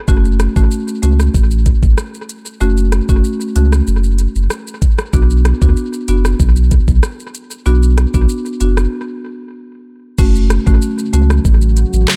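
From the first moment, a sultry, tough dancehall groove sets in with an electronic island pop drum kit up front: a knocking kick, smooth hi-hat, rim clicks, handclaps, shaker and a crash cymbal. A deep, round sine sub bass with a fast attack sits up front alongside it, while a woody marimba played with medium mallets on rosewood bars adds a softer accompaniment lower in the mix. The whole track is bathed in an echo-heavy digital ambience. A break arrives at 8.9 seconds before a new section begins, where a moody, detuned sawtooth pad with a sub octave, wave-folding and ring modulation fades in at 11.0 seconds with a slow attack, chorus, built-in reverb and sidechain pumping, sitting in the background. The marimba drops out at 11.3 seconds, leaving the drums, bass and pad as the clip cuts off mid-piece.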